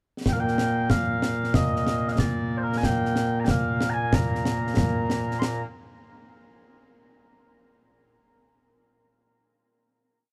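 Mellow small bagpipes and a close, dry concert snare and bass drum with dark cymbals enter together at 0.3 s in this brief, proud and ceremonial piece of Scottish pipe music in 6/8 at 93 BPM, the sweet, continuous pipes carrying an ornamented modal melody over a marching snare pattern before a final note rings out from 5.4 s in a dark, warm production.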